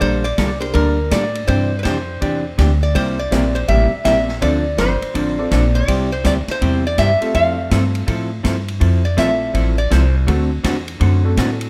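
Lightly reverberant and cheerful, this down-home western swing cut from a longer country piece moves at 164 BPM in F major, with a bright, nasal metal-body resonator slide guitar played with fingerpicks carrying the melody up front and taking a steel-bar solo at 8.8 seconds, over a dark, clean hollow-body jazz guitar, a thumpy, gut-strung upright bass, a swinging big-band drum kit with a punchy kick, and a slightly detuned upright piano with short sustain that joins in the background at 0.6 seconds.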